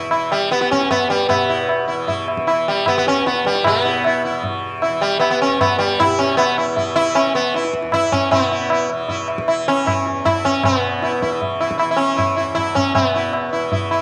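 Up front, a plectrum-plucked sitar with buzzing, shimmering sympathetic strings carries a solemn, meditative Hindustani classical melody at 154 BPM in 3/4, over a bright, softly plucked tanpura drone and a high-tuned, ringing tabla with a vintage, band-limited tone that enters at 0.1 s, heard in a moderate plate reverb, with a new section arriving at 8.3 s in this fragment of a longer piece.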